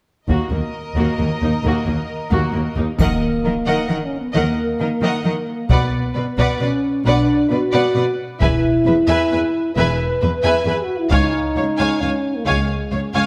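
Epic orchestral film score in Eb minor at 133 BPM in 3/4, this dramatic excerpt opens with close, dry taiko ensemble struck with hard sticks under bowed strings (a warm, smooth violin section on a second line, focused violas, lush cellos and clear double basses), and at 3.0 s a huge, dark impact and a very quiet triangle mark the arrival of a rich, vibrato-laden violin melody and an up-front, dark French horn section holding sustained chords, all set in a wet scoring-stage reverb as the harmony moves from Ebm through Bm and E to Db.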